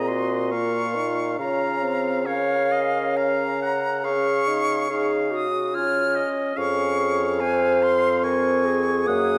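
A moderate reverb from a scoring stage gives this short classical passage a roomy, lyrical glow as a wind quintet plays a slow romantic movement in 3/4 at 70 BPM, its time stretched by a flexible rubato. Close-miked and up front, the flute carries the airy melody high in its range, its tone bright with vibrato and a soft attack. Beneath it the oboe sings a clear second line with light vibrato, while the clarinet adds a vintage, warm-hued accompaniment in its middle register. The French horn sounds distant and spacious, its soft-attacked accompaniment sitting low, and the bassoon anchors the bass with a mellow tone and light vibrato. All five instruments play throughout the 9.4 seconds, moving through Bbm and Db harmonies in a warm, lyrical mood cut from a longer piece.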